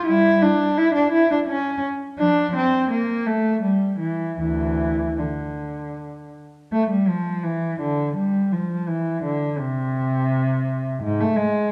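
Radiant and serene, this short excerpt of a classical, baroque-style suite movement in 3/4 gives the stage to a lone bowed cello, placed up front yet with a distant quality, its expressive, rubato line spanning D2 to E4 with vibrato and portamento, all bathed in a wet recital-hall reverb within a dark, warm production.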